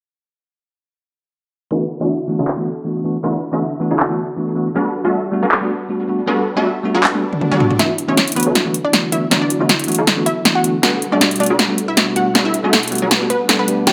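Future bass at 158 BPM in G major, playful and lush, moving in a half-time feel with a light swing on the sixteenths, heard as a short cut from a longer piece. At 1.7 seconds a bell-like, clean tine electric piano and an up-front, detuned supersaw stab with analog chorus and tape echo enter together over a D69 to Gmaj9 progression, the stab's filter sweeping through both sections. A punchy big-room drum kit follows at 2.5 seconds with handclaps, metallic hi-hats, snare and toms, and a fill leads into the second section while a very quiet electronic swell rises beneath it. From 7.8 seconds a bright unison pluck carries the melody with tape echo, its decaying sawtooth and sine layers edged with noise, while an airy, breathy pad with chorus sits dark and soft in the background as the music builds. A moderate digital room reverb gives the mix a sense of space, and a riser marks the close at 13.9 seconds.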